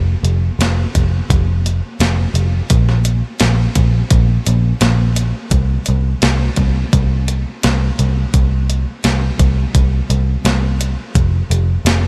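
A vintage electric bass opens this short rock excerpt in a shoegaze and dream pop vein, its muted, picked notes sitting low between F1 and C2 with a dark, round, amped tone placed up front. A clean 12-bit drum machine joins at 0.2 s with hi-hat, a thumpy kick and a medium-tuned snare, its sampler-style sound pushed through overdrive and re-recorded in a small room. The drums also sit up front, a little below the bass in level. The mood is hazy and wistful, carried by a straight 4/4 pulse and a tuning reference of A4 = 441 Hz. A light reverb surrounds the pair, and lossy compression artefacts add a worn, grainy edge before both parts end near 12.1 s.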